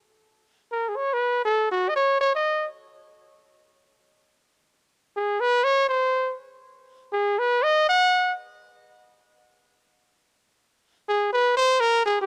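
Jazz in free time, this short cut from a longer piece carries a moody, late-night air. A lone trumpet takes the solo, entering at 0.7 seconds and playing in separate phrases, with its final phrase arriving at 11.1 seconds. Its tone is bright, punchy and forceful, colored by a light vibrato and scooped notes in a jazz style, ranging from F#4 to F#5. The horn sits up front in a dry, close recording with a 1970s studio character and a small room ambience around it. The tuning sits a little below standard, at A4 = 436 Hz.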